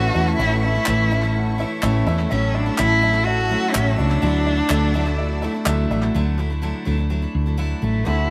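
A single bowed cello carries the melody from the first moment of this hopeful, anthemic indie folk excerpt, its expressive vibrato and gliding portamento sitting up front with a touch of analog delay. Beneath it, a growly, round fretless electric bass anchors the low end. A bright, full-bodied picked dreadnought guitar, also touched with analog delay, and a dark, boxy upright piano with long sustain fill out the accompaniment. A distant studio string section holds soft-attack chords in the background, and a very quiet, crisp group handclap enters at 0.9 seconds, close and dry. The harmony moves from F#m7/A to Dadd9 at 4.2 seconds, and the piano adds short fills before stopping at 6.2 seconds, as the music passes into a new section. In the closing moment, at 8.1 seconds, a fingerpicked acoustic guitar appears faintly in the background, all set in an echo-heavy mix with light reverb.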